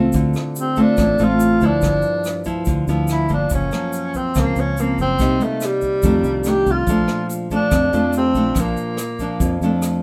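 This relaxed, sophisticated bossa nova excerpt moves at 142 BPM in Bb major, with a woody, fingerpicked nylon-string guitar up front, a round, foam-muted electric bass and a brushed drum kit with a boomy kick and rim clicks. A grainy, close tube shaker sits low in the mix. From 0.6 s a breathy subtone tenor saxophone carries the melody with vibrato, scooped notes and a soft, intimate attack over a moderate studio reverb, as the harmony passes through Dm7, G6, Gbmaj7#11, Cm7 and F13 to Bbmaj7.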